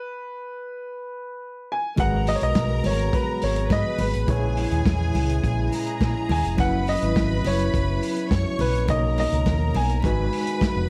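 Disco with a danceable, driving feel, this short cut opens on a baby grand piano with an open, long-sustaining tone carrying the melody alone before the full band arrives at 2.0 s. There a round, amped fingered electric bass sits up front beneath a muffled, lo-fi vintage drum kit with punchy kick and very quiet, hard-hand congas, while a barky, gritty tine electric piano with fast tremolo comps through a combo amp. A biting, lush symphonic string section adds a second line over mellow French horns holding sustained chords in the background, all in a dark, dry production that moves through jazzy minor-ninth and major-ninth harmony.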